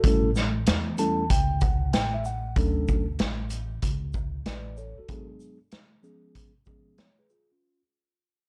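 Smooth and warm, this short jazz-hop excerpt cut from a longer hip hop piece sways at 95 BPM in A major with a heavy 16th-note swing, fading out across its whole length. A mellow, clean tine electric piano sits up front through its built-in speakers, playing a fill from 0.7 to 2.6 seconds over chords moving from A7 to Dmaj7, G#m7b5 and C#7, while a woody, thumpy pizzicato upright bass with transformer saturation drops out at 5.0 seconds as the break begins at 5.1. A vintage kit of punchy kick, medium-tuned snare, hi-hat and shaker pumps in a small room with a rolled-off top, and the whole recording carries a cassette-tape character.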